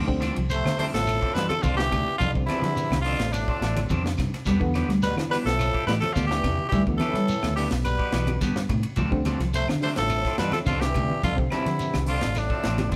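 Twangy, slightly broken-up electric guitar stabs and a round, punchy fingered bass open this straight 4/4 afrobeat groove at 106 BPM in D dorian. Within moments a tight, dry funk drum kit with bright cymbals, a dark, clean arpeggiating electric guitar and a reedy electric piano shimmering with fast tremolo join them. Low-tuned congas with a thin skin and a grainy shekere sit in the background of the hypnotic, driving pulse, joined by very quiet, close and dry woody claves. At 0.5 seconds a raspy, gritty tenor saxophone takes the melody up front, while a clear trombone and a veiled, cup-muted trombone section play a second line beneath it. The harmony moves from Dm7 to Em7 at 4.5 seconds and back to Dm7 at 9.0 seconds. The band sounds as if it is playing live in a moderately reverberant stone room, and the clip is cut from a longer piece.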